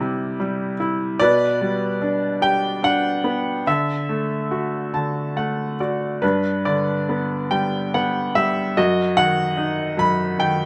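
A bright upright piano plays alone in this tender, peaceful fragment of a lyrical classical solo, moving in a rubato 3/4 at about 71 BPM in G major through chords such as Cadd9, G/B and Dadd9. The instrument sounds woody and intimate, with long sustain and audible action noise, captured up front by close, detailed microphones in light reverb. A short piano fill from 4.5 to 6.2 seconds leads to a G chord before the passage moves on to Gmaj7#5/F#.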